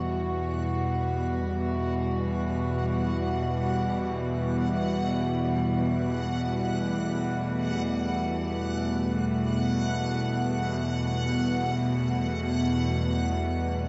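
A tense, bowed-like drone sits up front in this unsettling dark ambient excerpt, its sawtooth, string-like tone thickened by a noise layer and a touch of vibrato, with a slow attack and long release in the low register from E2 to B2. A filter sweep moves across this drone for the full 13.9 seconds, and its tone is bright, with its own built-in reverb. Above it, a chamber cello section holds sustained chords, its gut-string, period-style sound reedy yet smooth on top and also placed close to the listener. High above, a reversed, granular texture swells on a single F#5, a dreamy, triangle-based shimmer with a soft attack and its own reverb. The whole ominous passage is bathed in a wet plate reverb with a long tail, and the top end is rolled off above 7.8 kHz, leaving a dim, enclosed sound.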